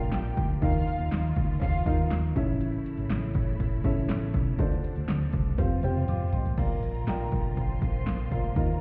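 A woody, boxy upright piano opens this hopeful piano-driven pop excerpt at 121 BPM alongside a dark, round, foam-muted electric bass, a lush violin section with a smooth top that drops out at 2.1 seconds and returns at 6.6, and a distant string section holding vibrato chords in the background, while an up-front, tape-warm electronic house kit with punchy kick and snare, warm hats, handclaps, crash and toms drives a fill from 5.6 seconds over chords moving from Bb through Ebsus2, A, Dm7 and Fsus2, all heard muffled as if through a wall in a stone room.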